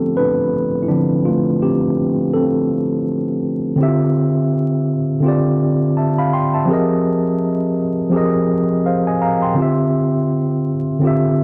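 A mellow, clean tine electric piano sits up front through its built-in speakers, colored by cassette tape and a low-pass filter as it moves from Dm7 to Fm11 at 6.7 seconds and settles on Dm11 at 9.6 seconds. This hazy, reflective hip hop fragment moves at 83 BPM in 4/4 with a 59% swing on the sixteenths, the piano playing alone throughout its 11.4 seconds. A moderate spring reverb and vinyl crackle wrap it in a dark production.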